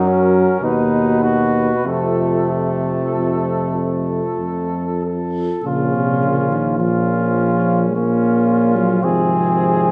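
Heard in a moderate recital-hall reverb, this short passage cut from a longer classical, hymn-like brass band piece in Bb minor moves at a slow, rubato 46-56 BPM in 3/4 with a melancholic, yearning mood, as a mellow, distant cornet carries the melody with light vibrato from 0.1 seconds over a warm flugelhorn second line, a clear, present trombone and a dark, close-miked euphonium in the accompaniment, and an up-front tuba bass with a soft attack, light vibrato and a vintage tone.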